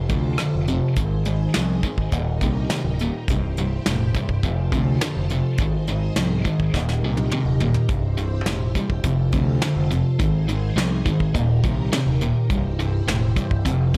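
Swaggering and confident, this classic rock excerpt moves at 104 BPM in a straight 4/4, built on a sludgy, double-tracked guitar riff that sits up front, bright and overdriven, over a growling fingered bass with its own overdrive. A soft brush drum kit with a punchy kick and medium-tuned snare keeps time from 0.1 seconds, breaking into a fill at 6.7 seconds, while a lush vintage string machine holds sustained chords with ensemble chorus behind everything. The chords cycle through F, Ab, Eb and C in a small room ambience.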